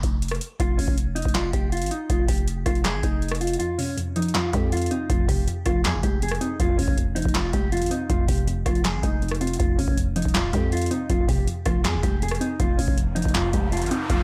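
A booming analog drum machine sits up front in this menacing, dark trap excerpt, its deep kick, crisp snare, metallic hi-hats, handclaps and rim clicks given an overdriven grit, as if re-recorded in a small room. The tempo is 160 BPM in 4/4 with a half-time feel, and the piece is in F minor, settling on an F minor chord from 0.6 seconds. A growling 808-style bass, buzzy and saturated with a fast attack and decaying tail, anchors the low end, while a mellow electric guitar enters at 0.6 seconds with a clean, fingered, compressed melody softened by subtle chorus, a low-pass filter and analog delay. At 3.6 seconds a warbly, dusty lo-fi pluck joins as accompaniment, its detuned tone with a sub octave and a filter sweep sounding hazy under chorus, and the kick briefly drops out as it arrives. An electronic riser enters at 13.0 seconds, and light reverb gives the mix a little space.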